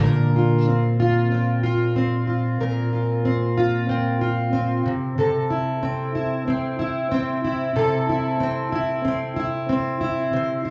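Easy-going and sunny, this short pop fragment at 93 BPM, lightly swung, features a single fingerpicked, plugged-in steel-string acoustic guitar, double-tracked, full-bodied and up front with jumbo depth, moving from Bbsus2 to Am/C at 4.9 seconds, heard live through a club PA with moderate reverb.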